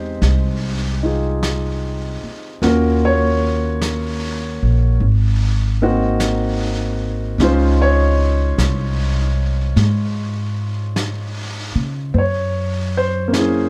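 A baby grand piano with long sustain and a woody pizzicato upright bass open this wistful, intimate swung jazz ballad excerpt, joined at 0.2 s by a soft vintage brush kit with a rolled-off top on snare and hi-hat, as the dark, dry, close-sounding trio moves through Fm9, Ebm7, Ab9, Dbmaj7 and Gb9.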